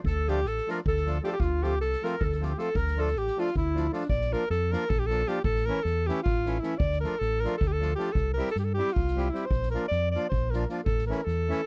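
A driving 7/8 pulse at 311 BPM, counted in eighths, propels this fiery, bittersweet Balkan wedding-band piece in D minor, built on a soft-mallet drum kit with a boomy kick and medium-tuned snare beneath a dark, round fingered electric bass. Up front, the alto saxophone carries the melody in a classical style with light vibrato and a smooth top, while a warm clarinet adds a second line in the background until 4.1 s and a reedy, close-miked accordion fills out the chords. The dry, close 1970s-style studio sound keeps this section of a longer piece intimate as the harmony moves from Dm and F through Bb, A and C.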